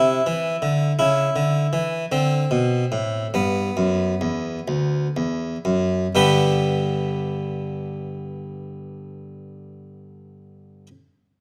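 A solo harpsichord, plucked and round-toned with a French-style voice on a single set of strings, sits up front in this short cut from a longer baroque-style suite movement in G major. The dance-like, flowing 6/8 lilt moves freely around 39-58 BPM in dotted quarters, easing back over the opening 6.2 seconds as the harmony passes from Cadd9 through C#m and D5 to G before a second section begins. Close, detailed microphones capture the instrument within a moderate recital hall reverb.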